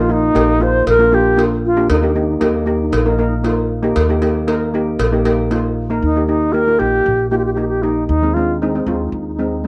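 A festive, sunny calypso fragment opens with the alto flute, steel pan and upright bass sounding together at a straight 116 BPM in Eb major, tuned slightly low. The alto flute carries the melody up front with a pure, tongued tone and vibrato, its sound given a cassette-tape coloring and a slightly distant quality. Double seconds steel pan, struck with hard rubber sticks, supplies bright, shimmering accompaniment. Beneath them, a pizzicato upright bass on gut strings adds a woody, thumpy foundation. A metallic cowbell, set back as if in a large room, enters at 0.4 seconds and drops out at 5.6 seconds. The harmony moves from Bbsus4 to Bb and settles on Eb, shifting to Ab/Eb near the close, all within light reverb and small-room ambience that carries the homemade cassette feel and a faint mains hum.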